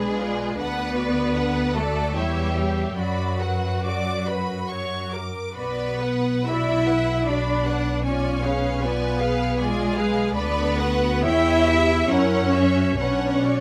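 Yearning and elegiac, this slow romantic movement for string orchestra moves in a rubato 3/4 at roughly 63-80 BPM, in B minor, in a passage cut from a longer work. Every section plays bowed with vibrato for the full 13.6 seconds. The first violins carry a focused melody spanning B4 to D6, while the second violins sing a lush, more distant line beneath them. Smooth, even violas fill the middle, and the cellos add a rich, somewhat remote bass alongside the dark, woody double basses, which sit up front. The harmony leans on diminished colours, opening on Bdim7 and reaching F#7 before settling on Bm at 13.0 seconds. Close, detailed microphones and a light reverb give the ensemble an intimate studio sound.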